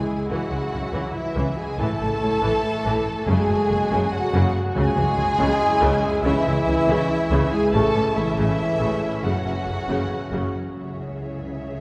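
Cinematic orchestral music in 7/8 and C# minor, dark and epic, moving at 282 BPM in eighths as a short cut from a longer piece, bathed in a cathedral-like reverb. Lush bowed violins carry a focused, vibrato-rich melody over a soft-attacked second violin line and an even, rich viola accompaniment, while mellow French horns and bright, close-miked trombones hold sustained chords in the background, the trombones dropping out at 10.5 seconds. Dark cellos and expressive double basses enter at 0.3 seconds to anchor the bass, and hard-mallet timpani on calf heads are barely audible around 4.8 seconds.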